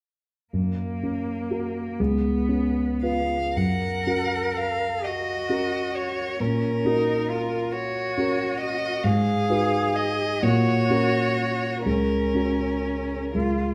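Moderate recital-hall reverb surrounds this serene, lyrical passage, cut from a longer slow romantic movement for piano trio in 6/8, played with supple rubato. From 0.5 seconds, a dark, mellow concert grand carries the accompaniment, its deep bass sitting up front. Alongside it, a clear, focused cello bows a second line with vibrato. At 3.0 seconds the violin takes up the melody with a rich tone, shaping expressive phrases through vibrato and portamento. Both string players sound slightly distant yet stay up front in the balance, giving the trio an intimate, unhurried character.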